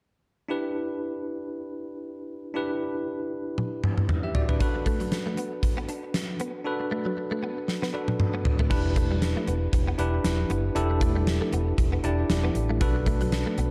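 A bell-like tine electric piano opens this excerpt of 1980s-style pop at 0.5 s, laying down Em7 and Bm7 chords at 117 BPM with a lightly swung sixteenth feel and an urgent yet nostalgic mood. A gated drum kit with a fat snare, tight kick and bright cymbals bursts in with a fill at 3.6 s, and soon after a twangy, compressed clean guitar picks out a riff through ensemble chorus and delay. A round, mellow fretless bass joins at 8.7 s, all set in a moderate hall reverb within a dark production.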